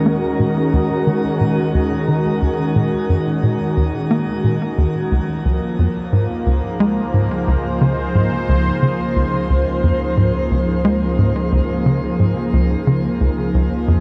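Ambient, sequencer-driven space music with a luminous, cosmic mood, built on a tight, punchy sawtooth sequencer bass riff whose plucky filtered notes echo through delay, an airy, detuned, slowly evolving resonant pad holding chorused chords up front, and a fading-in analog drone with pulse-width movement humming in the background, all bathed in a long shimmering reverb and a dark production as the harmony shifts from Ebm to Db at 5.1 seconds.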